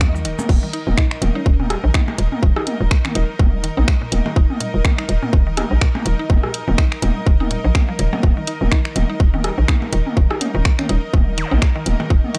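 A grainy egg shaker opens this quirky, sparse minimal techno excerpt at 124 BPM with a 16th-note swing, alongside an overdriven tight kick up front, a hollow, bouncy FM bass that pumps against it, and overdriven layered kits of hi-hat, finger snaps, crash, rim clicks, toms and blips. Beneath them, a woody mallet-like pluck with chorus and delay plays a riff in the background, while a clear, biting bowed string section with light vibrato pumps underneath. A sparkling, bell-like FM electric piano with phaser and 12-bit grit drifts in briefly at 1.0 seconds and returns at 8.7 seconds, and a faint electronic zap lands at 11.4 seconds in a dark, dry mix.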